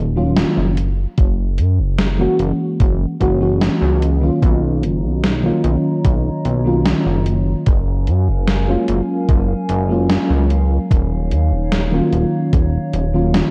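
A thumpy, overdriven electronic kick drum sits up front in this faded, nostalgic vaporwave excerpt, entering at 1.2 seconds with a gritty, 12-bit sampler character and a small-room sheen. It shares the groove with a gated 80s digital drum machine playing hi-hat and a snare soaked in gated reverb, likewise overdriven and crunchy. Underneath, a glossy, evolving synth bass built from pulse and sawtooth tones carries a plucky filter, chorus and tube saturation. A soft, round FM electric piano with a dark edge and a faint noise layer supplies the chords through analog chorus and delay. From 5.0 seconds a quiet, warbling tape-like pad drifts in with a slow attack and long release, adding lo-fi shimmer and its own reverb. The slow, straight 74 BPM pulse in F# major moves through lush extended chords, D#m9, F#9, Bmaj9#11 and F#maj9, all coloured by a cassette-tape haze in a dry room.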